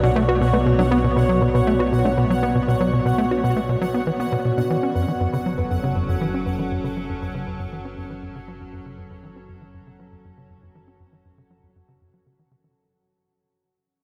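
Ambient, sequencer-driven space music with a mysterious, expansive mood, in which a punchy, up-front sawtooth sequencer bass riff with tape echo drives beneath a morphing, detuned wavetable pad of sustained chords, soft round plucked arpeggios with chorus and tape echo sitting dark in the background, a low analog drone with pulse-width modulation, and a bright, tempo-synced gated texture pulsing high above, all shifting from Bmadd9 to F#m at 4.7 seconds in a dreamy mix soaked in huge reverb, while a filter sweep moves across the bass and the whole excerpt fades out.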